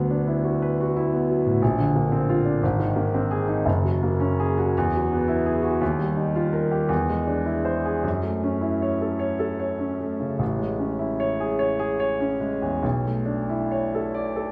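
Set in a moderate recital hall reverb over a small room's ambience, this luminous, dreamy excerpt of impressionist classical solo piano features an up-front, warm grand with long sustain, drifting in a rubato 6/8 through a chain of colorful added-ninth chords before settling from F#m7 at 8.1 seconds onto Amaj7 and a closing Bm11.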